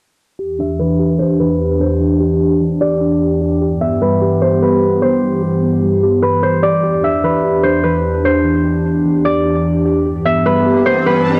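A dry, gritty recording with transformer saturation frames this melancholic, hazy half-time hip hop excerpt in E minor at 149 BPM: a hollow, flute-like, detuned pad holds dark sustained chords up front, muted felt-like synth keys with a filter sweep and tape echo play intimate arpeggios in the background from 0.4 s, a ringing, fingerpicked concert harp carries the melody up front, and an electronic riser enters at 10.4 s as the harmony alternates between Em7 and G6.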